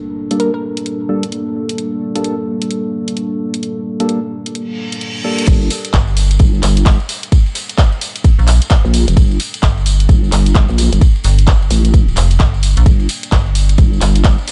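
Bass house at 130 BPM in G minor, swung on the sixteenths, with an aggressive, swaggering mood and a dark production under light digital ambience. A deep, moody analog pad holds sustained chords throughout, pumping against the sidechain, while a hollow, organ-like stab carries a filter sweep through the opening build, with a glassy pluck flickering briefly through 12-bit grit and delay. A house kit with bright hats, handclaps and crash runs from the start, and a reverse cymbal rises into the drop at 5.5 seconds. There a punchy electronic kick lands up front alongside a nasal, wobbling vowel-sweep bass, joined moments later by a metallic FM bass, both overdriven and pumping in the low register. Behind them sit a big-room acoustic kit with a fat snare and ride, filtered and kept in the background, and a jingly tambourine that adds small-room texture to the groove.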